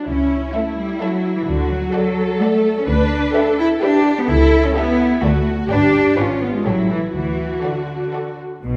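A quick, lively classical-period movement for string orchestra in D major, moving at 128 BPM in a graceful 3/4, with a soft-edged, distant violin section singing the melody in the background while a second violin line and a violas section with expressive portamento fill in the accompaniment. Up front, a rich, focused cello section and a dark, even double bass section anchor the harmony as it passes through chords such as A7/C#, G#dim7 and A7 before settling on D at 7.1 seconds. A wet scoring-stage reverb surrounds the ensemble, and the passage is cut from a longer piece.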